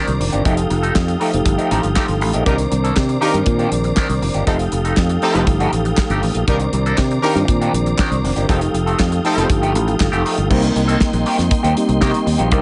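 Disco excerpt at 119 BPM in C dorian, sultry and driving, built on a straight 4/4 groove from a dry, tight 70s drum kit and a growly, punchy fingered electric bass sitting up front in a lightly reverberant mix. A twangy wah guitar at the edge of break-up, a mellow tine electric piano and a smooth tonewheel organ with chorus vibrato and key click fill out chords alternating between F9 and Cm9, with crisp group handclaps in the background from 1.0 s. A pop-style horn section adds stabs with light vibrato from 2.5 s, and the chords turn to Cm7 at 10.5 s.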